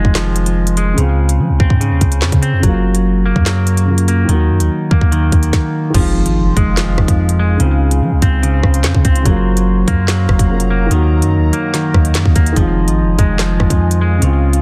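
A dense, heavily limited modern mix in a digital ambience sets a tense, cold tone for this half-time drill beat, cut from a longer piece. Up front, the electronic drill kit pairs a hard-clipped kick and a woody snare, softly clipped, with crisp hi-hats, rim clicks, handclaps and crash, while a long, sine-like 808-style bass with a fast attack hums deep beneath it. A bright, clean semi-hollow electric guitar plays picked, compressed arpeggios through a low-pass filter and delay, joined by a boxy, long-sustaining grand piano, also filtered, sitting lower in the mix. The chords cycle through Fm7, Dbmaj7, Gbmaj7 and Ebm. A brief stop at 5.5 seconds gives way to a very quiet electronic impact at 5.9 seconds, and from 6.5 seconds a moody, detuned sawtooth pad with a sub octave, chorus and reverb swells in slowly from the background.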